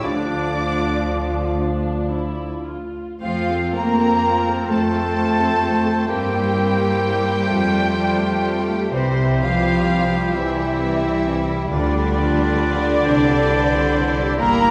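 Classical slow romantic orchestral music in a yearning, melancholic rubato 6/8, where a veiled con sordino violin section carries the melody over a second, background violin line, a pure, crisp-attacked concert flute, a bright vintage clarinet and a smooth-topped oboe, while a lush, very quiet muted viola section and a roomy bassoon with vibrato fill the accompaniment, dark French horns hold soft-attacked sustained chords, mellow trumpet stabs sound only until 1.6 s, and distant cellos join close double basses on the bass line, all set in a stone room reverb with a faint mains hum.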